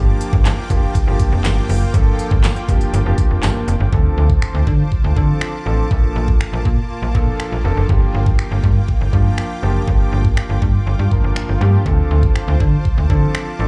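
Heard as a live gig through a venue's PA with club ambience all around, this confident, energetic dance-pop fragment in G minor moves at 121 BPM in a straight 4/4 over Gm7, Dm7 and Bbmaj7. A snappy, metallic FM slap bass and an electronic pop kit of knocking kick, fat snare, crisp hats, handclaps and finger snaps sit up front, while an intimate concert grand with audible action noise and a lush, detuned supersaw pad supply the chords. The piano, pad and bass all pump with sidechain, and a jingly tambourine sits in the background only from 0.5 to 3.5 seconds.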